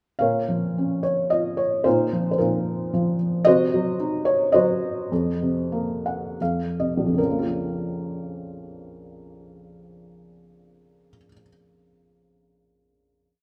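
A felt-muted upright piano sits up front in a wet recital hall, its soft, mellow tone and short sustain giving the sound an intimate, vintage character against the room's 1.6-second reverb. This complete short classical piece for solo piano is brooding and cool, set in Bb minor in 3/4 with a rubato feel, moving between 71 and 115 BPM and tuned to A4 = 437 Hz. The melody is built from a motif shaped into arch phrases, carried over a lilting lower-register accompaniment, and the piano spans Bb1 to Gb5. The harmony moves from Bbm through Ebsus2/Bb, Cdim, Fsus4 and F5 before returning to Bbm. The music slows from 3.5 seconds, a brief piano fill arrives at 5.7 seconds, and a final Bbm chord rings from 7.2 seconds to close the piece.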